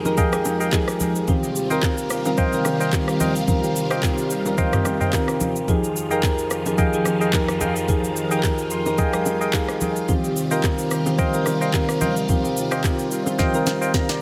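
Deep and hypnotic, this amapiano excerpt swings over Fm9 and Eb69 chords as round, mellow electric-piano-like synth keys with chorus and tremolo sit up front, a swirling, warbling string machine pumps beneath with phaser and ensemble chorus, hollow, dark organ stabs punch through tape echo, a smooth R&B kit with a soft kick and sharp snare adds handclaps, rim clicks, shaker and toms before a drum fill at 13.4 seconds, and bright bongos and congas tap away in the background, all set in a light digital reverb.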